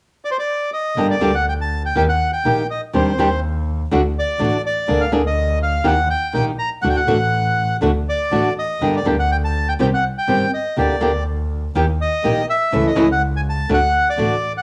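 A reedy bandoneon opens this melancholic, sultry rubato tango fragment at 0.2 s and carries the melody, joined at 1.0 s by a bright, fingerpicked acoustic flamenco guitar and a rich, intimate double bass bowed sul tasto with an airy tone, soft attack and light vibrato, the three parts up front in a small home room with moderate spring reverb and a cassette-tape grain on the bandoneon and guitar as the chords move from Gm through Eb and Cm to a closing D.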